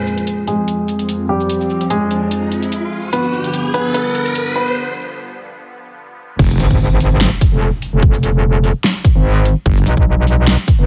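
A heavy, chaotic wobble dubstep excerpt at 147 BPM in half-time opens in a mix with light reverb, where a present baby grand piano melody with delay and a lush, detuned supersaw pad pumping through a phaser build over Fm and G7 beneath a riser and a tape-warm, up-front dubstep kit of huge snare, metallic hats, shaker and crash, before the drop at 6.4 seconds brings a punchy electronic kick, a saturated sawtooth wobble bass and an aggressive, metallic FM wobble bass with chorus and overdrive.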